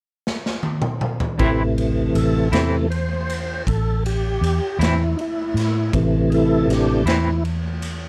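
A lightly reverberant slow blues fragment in 12/8 at 53 BPM and A minor, brooding and mournful, opens with a raw, gritty garage drum fill of punchy kick, medium-tuned snare, toms and ride in a bright, pumping stone room, and at 1.4 seconds a full, lightly overdriven tonewheel organ with key click, chorus vibrato and slow rotary speaker takes an up-front solo over an Am chord, joined by a clean, scooped electric guitar with tremolo and a dark, round, foam-muted fingered bass.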